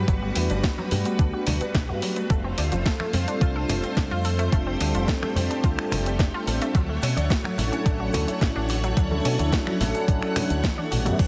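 A straight 4/4 groove at 108 BPM drives this groovy, feel-good nu-disco excerpt, where an overdriven, thumpy electronic kick sits up front beside a layered house kit with a cracking snare, hi-hat, finger snaps and crash, a very quiet egg shaker and congas, and a round, punchy fingered electric bass with an envelope filter, all under a smooth detuned analog pad with a filter sweep, lush, bright string-machine chords and a warm background analog pluck arpeggio, all moving through Gmaj7, F6 and Dmaj7 with heavily compressed, radio-like sound before a drum fill at 10.6 seconds.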